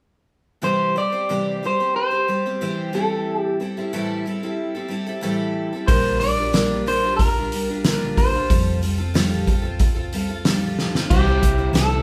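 A live-in-one-room sound with moderate large studio reverb carries this jangly, warm folk rock and heartland rock excerpt at 92 BPM in C mixolydian, where a twangy, slightly broken-up electric guitar melody from a small old amp rides over shimmering, octave-doubled picked twelve-string acoustic chords moving C, Am7, Bb6 and Fadd9, before a round, hollow-body picked electric bass and a loose indie drum kit with a fat snare, punchy kick and dark cymbals join at 5.9 seconds, the drums rolling into a fill at 10.8 seconds ahead of the return to C.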